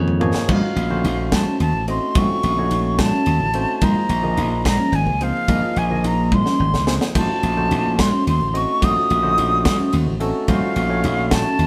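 Electric jazz fusion in a nocturnal, intense 6/8 at 72 BPM, cut from a longer piece, where a close-miked, airy jazz flute with vibrato and a crisp, chiffy attack carries the melody over punchy, up-front slap bass, a barky tine electric piano, a crisp fusion drum kit with a high-tuned snare and drum fills at 0.0 and 6.3 seconds, soft-handed congas and dark, fingered electric guitar stabs in the background, all played live in one room with moderate studio reverb over F7b9b13 and Bbm11 harmony.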